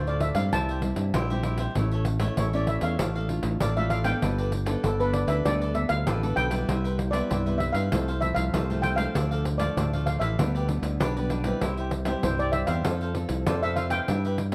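A straight 4/4 groove at 97 BPM drives this festive, playful blend of samba and choro in C major, tuned to A4 = 438 Hz and cut from a longer piece. The jingly pandeiro, heard in a small room, comes in at 0.1 s, while a growly, up-front fingered electric bass holds the low end between G1 and G2. A steel pan carries the melody from A4 to A5, played with soft rubber sticks for a mellow, shimmering metallic tone touched with tape echo, and it stops at 14.2 s. Beneath it, a crisp, picked cavaquinho and a fingerpicked classical nylon-string guitar with fresh strings, sitting in the background, fill out the accompaniment. The harmony moves from Dm through C, A and Gadd9 to Cmaj7, F/C and G/D before landing on F, inside one section wrapped in light reverb and a dark, warm production.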